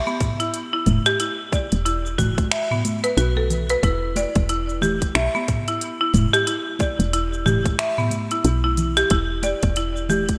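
Meditative and mystical, this organic downtempo groove swings in 4/4, opening at 0.0 s with a buzzing marimba struck with hard mallets, its dry, vintage arpeggios touched by digital delay. An overdriven electronic kit of finger snaps, crisp hats, shaker and toms, re-recorded in a large room with gated reverb, sits up front, joined by a tight overdriven kick, while bright, close congas stay in the background and a round, mellow FM bass with a fast attack arrives at 0.9 s. A lush hall reverb and bright 1980s-style digital production frame this passage cut from a longer piece.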